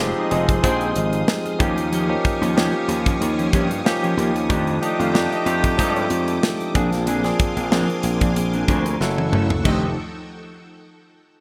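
A bright, polished 1980s-style digital production with light reverb frames this bittersweet, nocturnal slice of jazz-funk pop, cut from a longer piece and set at 93 BPM in F dorian with a gently swung sixteenth-note feel. Up front, a barky tine electric piano with subtle chorus comps over a Fm7, Eb9 and F13 progression, joined by a dark, fingered electric guitar riff soaked in lush chorus, a gritty, overdriven slap bass and a tight acoustic drum kit with a medium-tuned snare. A silky vintage string machine sustains chords beneath, while a mellow, distant horn section with light vibrato touches in at 0.2 seconds and returns at 4.8 seconds, before the electric piano takes a fill at 8.4 seconds, met by a drum fill at 9.0 seconds.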